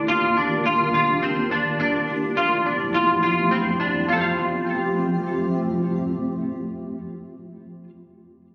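A straight 4/4 pulse at 105 BPM carries this blissful, ethereal dream pop excerpt in F major, where a bright, clean semi-hollow electric guitar picks compressed arpeggios up front, dressed in ensemble chorus and digital delay, through Ebmaj9, G13 and Fmaj9 before settling on Fadd9 at 4.1 seconds. Alongside it, a cloudy, evolving granular pad holds sustained chords with a slow attack, lush chorus and its own reverb, giving a blurred, mellow glow until it ends at 7.1 seconds, while the guitar rings on to 7.9 seconds. A wet plate reverb and bright 1980s-style digital production frame the whole passage.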